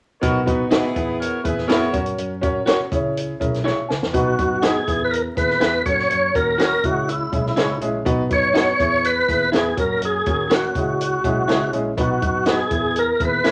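This joyful, uplifting stretch of uptempo 1960s-style soul at 123 BPM in B major opens with a clear, distant horn section sounding briefly over an up-front concert grand with audible action noise, a dark, round muted electric bass and a compact cocktail kit with a high-tuned snare. From 0.7 seconds, a slightly broken-up electric guitar adds stabs from the background. After a drum fill, a lightly overdriven tonewheel organ takes the melody up front at 4.1 seconds, its chorus vibrato and slow rotary speaker giving it a full voice as the B, E, F# and C#m progression cycles in a moderate club reverb over vinyl crackle.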